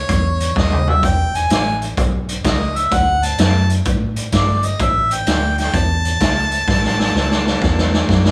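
A small room's ambience and light reverb frame this gritty, laid-back electric blues shuffle, cut from a longer piece, at 128 BPM in A mixolydian with a swung feel, the band heard playing live together. Up front, a bright harmonica with overdrive and light vibrato carries the melody between C#5 and A5, over a dark, round, foam-muted electric bass and a raw, saturated garage drum kit with a punchy kick, medium-tuned snare and rolled-off top. Drum fills come at 0.6 seconds and again from 6.7 seconds to the close at 8.3 seconds, as the chords move from a rootless A through E5 and D back to A.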